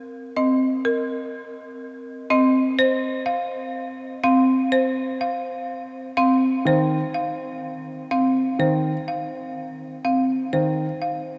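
Heard in a vast, echoing cathedral space, this excerpt of classical minimalist pattern music moves at 124 BPM in a straight 4/4, hypnotic and propulsive over C minor. A woody, bright folk marimba played with hard mallets carries the melody between Bb4 and F5, while a full, close-miked marimba with medium hard mallets plays arpeggios around C4, both up front from 0.4 seconds. At 6.7 seconds a dark, mellow grand piano enters with intimate accompaniment on Eb3, its action noise audible and its sustain short, as the harmony moves to Cmadd11/Eb.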